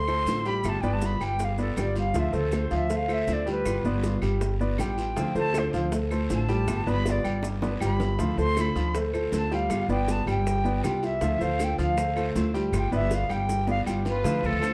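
Cuban son and guajira with a danceable, sunny mood at 159 BPM, this excerpt cycles between Dm7 and G7 while a pure, distant silver concert flute carries the melody with vibrato and a slapback echo over warm grand piano arpeggios and a thumpy, gut-strung upright bass up front. A small, fingerpicked nylon-string guitar with audible finger squeak fills in the accompaniment, and in the background sit tight, high-tuned bongos and cowbell, woody claves, raspy guiro and grainy maracas, with drum fills near 7.4 and 13.5 seconds. A rich, bowed violin section slips in on a second line at 14.1 seconds, just as the passage is cut off, and the production has a dark, moderately reverberant studio sound.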